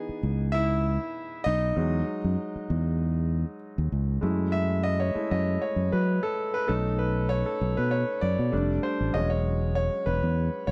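A gently swung sixteenth-note feel in 4/4 carries this short cut of lush 1970s-style soul, smooth and cinematic in mood. A clear, natural grand piano takes the solo spotlight throughout, while a dark, round fingered electric bass sits up front from 0.1 seconds, moving through rich chords such as C#m9, Emaj7 and B9, with a new section arriving at 4.2 seconds. The dry, close studio sound places both instruments intimately in a small room.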